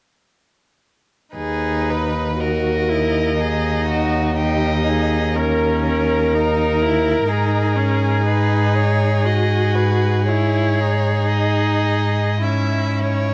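Up front in the close, detailed sound, a single cello carries the bass with a rich, smooth, even tone and vibrato, sitting between D#2 and G#2. This is a solemn, yearning slow romantic movement for string quartet in G# minor, taken from a longer piece. It moves at about 61 BPM in 3/4 with uneven beats and a rubato feel. Above the bass, one violin sings the melody between A#4 and E5 in a clear, even voice. A second violin adds a focused inner line, and a viola fills in the accompaniment, all bowed with vibrato. The four players enter together at 1.4 seconds and play through to 13.3 seconds over a light reverb, with the harmony moving from G#m/D# through a D#7 with its third omitted to G#m and then C#m/G#.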